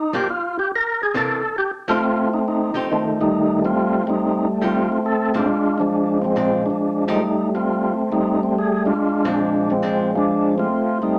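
Set in a moderate studio room, this soulful, bluesy swing jazz fragment from a longer piece features an up-front tonewheel organ, full and percussive with key click and a slow rotary speaker, soloing over the opening 2.0 seconds and carrying the melody through chords of C9, Bb9 and Fadd9, while a dark, compressed hollow-body archtop guitar adds clean picked accompaniment from 0.1 to 10.1 seconds.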